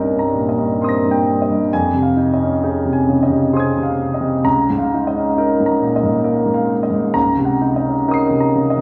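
A slow, rubato pulse in 3/4 moves at about 65 BPM, the beat bending freely in this brief impressionist solo piano passage cut from a longer piece. The mood is hazy and mysterious, carried by a single grand piano with a warm, present tone and long sustain that sits up front, ranging from C2 to C7. The harmony drifts from Cm7 to Fm7, reaches Db69 at 4.5 seconds, and settles on Ebm6/Db at 7.2 seconds. A wet recital hall reverb with a 1.7-second decay surrounds the instrument, giving the listener the sense of sitting further back in the room. The piano plays alone for the full 8.8 seconds.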